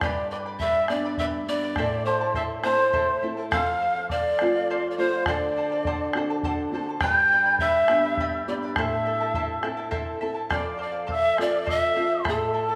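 A breathy, polished pan flute carries the melody up front, its close-miked wooden tone showing tongued chiff on the attacks and an expressive vibrato. Behind it, a mellow, hollow cane quena plays a second line higher up, sounding distant, end-blown and also breathy with its own vibrato. The charango adds a shimmering fingerpicked accompaniment on double strings, some doubled at the octave, while a small, thumb-plucked nylon-string guitar fills the low end with the occasional finger squeak. A round bombo keeps the pulse at 69 BPM in a straight 6/8, dropping out at 12.4 seconds just before the passage is cut from the longer piece at 12.8 seconds. This wistful, melancholic Andean folk ensemble moves through G, Am, F and D7, bathed in a lush hall reverb that gives the rough home demo mix a wet, spacious glow.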